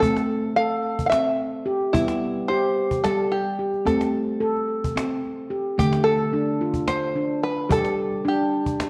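Ringing nitrided-steel handpan arpeggios, struck with soft fingertips and trailed by a diffuse ambient delay, sit up front in this gentle, meditative world piece in 7/8, cut from a longer work. A plunky, fingerpicked open-back banjo carries the twangy melody beside it, while a snappy cajon with snares keeps time from a small room. The whole recording sits in a wet echo chamber and carries the warbling pitch drift of worn cassette tape, with the harmony shifting to a new section at 5.8 seconds.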